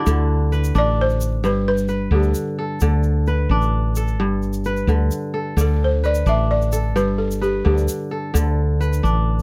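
Closely miked and nearly free of reverb, this joyful, hypnotic snippet of West African string and xylophone music in 12/8 at 87 BPM has a crisp, ringing kora fingerpicking bright arpeggios up front, a round, dark woody fretless electric bass underneath, and a bright, grainy tube shaker, while a dry, buzzing balafon struck with soft rubber mallets carries the melody from 0.8 to 8.1 seconds over a steady alternation of D5 and G.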